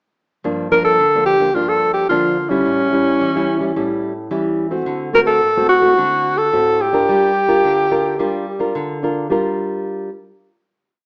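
Nostalgic and bittersweet, this brief samba sets an up-front alto saxophone, mellow with a subtone, vibrato and scooped notes, in jazz-styled motif phrases over a classical nylon-string guitar that thumbs the bass and plucks syncopated chords. The saxophone sings from 0.7 to 8.8 seconds, softened by a plate reverb, and the guitar rings on alone into a final chord, stopping at 10.1 seconds. A large studio room adds a moderate glow, but the sound comes through a small speaker.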